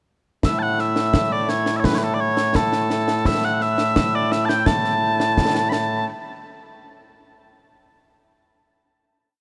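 This is Scottish traditional pipe music, a short complete piece in a straight 2/4 metre with a stirring, proud mood. Concert snare drum and concert bass drum come in at 0.4 seconds with a close, acoustic marching snare pattern and bright cymbals. A set of small bagpipes joins at 0.5 seconds, carrying a modal melody with ornaments in a continuous, sweet tone touched with vibrato and tape echo. The pipes sit up front as the solo voice, their mellow sound ranging from low notes to high, singing ones, while the drums stay a little further back. Light reverb surrounds the performance, and at 6.1 seconds the tune gives way to a final hit that closes the piece.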